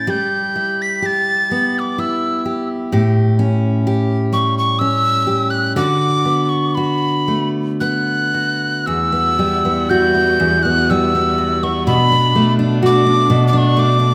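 Wistful and pastoral, this short excerpt from a longer Celtic slow air drifts in 3/4 at roughly 56-65 BPM with a loose, rubato feel. A breathy metal tin whistle carries the melody up front, close-miked and high in its register, its tongued notes marked by a chiff and an unsteady vibrato. Beneath it, a bright, full-bodied picked steel-string dreadnought guitar sits equally forward, providing the accompaniment throughout. At 8.9 seconds a clear, focused studio string section enters in the background, its bowed ensemble chords sustained with vibrato through the close at 14.1 seconds. The harmony moves from Em/G through A7 and D6 to Emadd9 and Bm7, and a wet scoring-stage reverb with a two-second tail lends the whole a spacious, lingering air.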